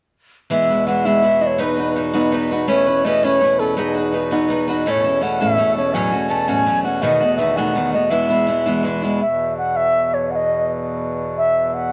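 Bright and lively, this Celtic jig excerpt in 6/8 at 110 BPM in E major sets a pure, mellow wooden flute melody with vibrato and a crisp attack up front over a woody picked steel-string acoustic guitar on old strings, which stops at 9.2 s, and a reedy, breathing pedal harmonium drone, all sitting in a wet spring reverb with small room ambience.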